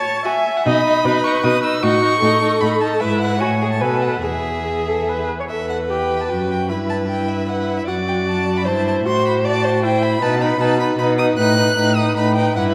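A lively, spirited classical-period string quartet movement in quick 3/4 at 152 BPM with a rubato feel, moving from E major into E minor at 5.5 s, where a focused first violin sings the high melody with vibrato over a more distant second violin line, an expressive viola accompaniment colored by portamento, and a smooth, even cello bass entering at 0.7 s, all bowed by single players and set in a wet concert-hall reverb in this fragment cut from a longer piece.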